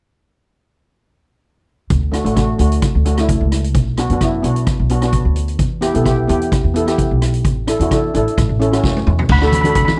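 Sunny and carefree, this short excerpt of calypso at 130 BPM in D major swings easily as a woody pizzicato upright bass and a boomy, rolled-off street-band drum kit start at 1.9 seconds, double-seconds steel pan chords shimmer airily from 2.1 seconds over a D, Bm, Em and Asus4 progression, a drum fill at 8.8 seconds hands off to a dark, smooth lead pan melody at 9.3 seconds, and bright, low-tuned congas join just before the end, all captured in a dry, close 1970s-style studio sound.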